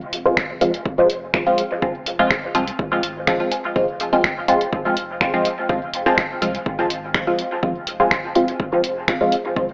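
A steady, straight pulse drives this meditative, deep dub techno fragment, cut from a longer piece. A punchy electronic kick, re-recorded in a small room, enters at 0.4 seconds beside an up-front analog drum machine playing finger snaps and hi-hat. Beneath them sits a soft, round sub bass built from triangle and square waves, sustained and tucked into the background, with tube saturation and sidechain pumping. Higher up, a filtered chord stab riff carries a nasal, resonant sawtooth tone with a filter pluck, a moving notch and phaser, while a second, very quiet stab part adds an evolving, detuned timbre with a sub octave, short decays, phaser, sidechain pumping and dub echo. The whole track sits on a single F minor chord, bathed in moderate room reverb and a lo-fi AM radio sound.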